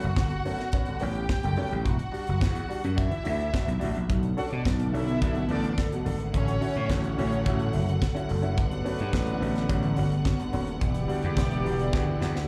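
A straight, driving disco groove from an airy, polished drum kit with a punchy kick and a growly, overdriven slap bass up front, supported by a clear grand piano with audible action noise and a smooth, close violin section that stops at 7.7 seconds; lush bowed strings join at 4.1 seconds and tight, mellow horn stabs arrive at 8.6 seconds, all heard with the reverberant ambience of a live club gig through the venue's PA.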